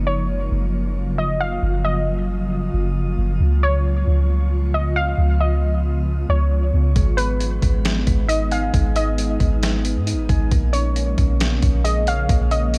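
Atmospheric cloud-rap in a melancholic, hazy mood, this hip hop piece moves at 135 BPM with a half-time feel in G# dorian, tuned slightly sharp to A4 = 445 Hz. An ethereal, airy pad holds sustained chords throughout, softened by ensemble chorus and its own reverb while sidechain pumping gives it a gentle breathing motion, as the harmony shifts from F#maj7 through C#7, G#m and A#m7. Underneath, a deep, round 808-style bass sits up front, and a warbling, lo-fi pluck carries the melody from 0.1 seconds, dusted with chorus, a low-pass filter and tape echo. At 7.0 seconds, soft electric-piano-like synth keys join with gentle arpeggios under the same chorus, filtering and tape echo, alongside a gritty, pitched-down sampler-style drum kit with a thumpy kick, a medium-tuned snare and hi-hat, overdriven and placed up front. The dry, close sound of this fragment from a longer piece keeps the haze intimate.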